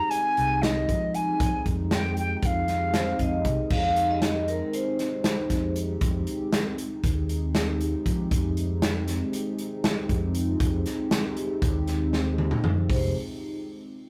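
A rough rehearsal-room recording with warm saturation and moderate studio reverb carries this brooding, intricate progressive instrumental, cut from a longer piece, in 9/8 at 235 BPM in F minor, opening on an Fm7 chord: an airy silver concert flute with vibrato carries the melody up front until 3.5 seconds, a deep, moody analog pad with chorus and phaser sustains beneath, a punchy, polished acoustic drum kit plays throughout with a fill from 12.1 seconds, a growly fingered electric bass holds the low end, and a ringing vibraphone with slow motor vibrato adds a second line from 3.0 seconds.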